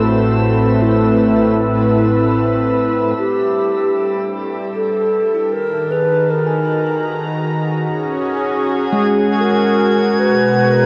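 Soaked in a long shimmer reverb and the warble of worn cassette tape, this serene, luminous ambient excerpt moves at 77 BPM in 3/4 through Amadd9, Gadd9, D#m, F#sus2 and Bm. A distant, hollow alto flute carries an airy, straight-toned melody with delay over a smooth, detuned sawtooth pad with chorus sitting up front, while a bright, bell-like tine electric piano plays clean arpeggios with delay, both of them fading in from 3.2 seconds. A deep, round sine sub bass fades out in the background over the opening, and a glassy harmonics texture with chorus and its own reverb drifts in the high register, returning at 8.4 seconds.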